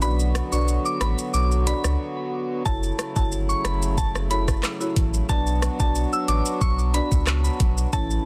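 A saturated, thick sub bass sits up front with a knocking electronic afro-pop kit of handclaps, metallic hi-hat, rim click and shaker, while a soft, warbling FM synth bell carries the melody with chorus and delay over woody marimba and a reedy, breathing pedal harmonium that pumps with sidechain, giving this short, dry, densely limited dancehall excerpt a sultry, hypnotic pull as it moves from B minor to F#m7 and back.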